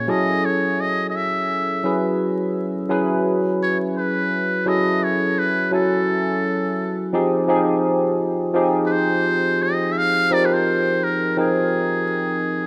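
Sultry and late-night, this short R&B fragment at 85 BPM in 4/4 with a swung sixteenth feel puts a bright, buzzy, thin metal-muted trumpet up front, close-miked and soloing jazz-style with light vibrato and scooped notes, over a barky, clean tine electric piano played through a combo amp with analog chorus, the harmony shifting from Gbm9 to Fm9 at 7.1 seconds within a lush hall reverb and a rough home-demo mix dusted with vinyl crackle.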